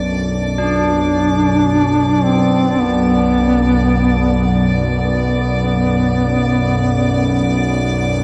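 This cavernous, unsettling dark ambient drone in B minor opens in free time on a barely audible deep pad and a tense, string-like bowed drone held up front with vibrato, while an icy, crystalline glass pad shimmers high above through chorus and reverb. At 0.6 s the deep pad drops away and a mellow duduk enters as the solo voice, singing a folk-style melody with vibrato, while solemn, metallic tubular bells ring arpeggios in the background, both trailing into shimmer reverb and a diffuse ambient delay. The production is dark and heavily wet, with a huge ambient reverb that lets every held tone linger through this short cut from a longer piece.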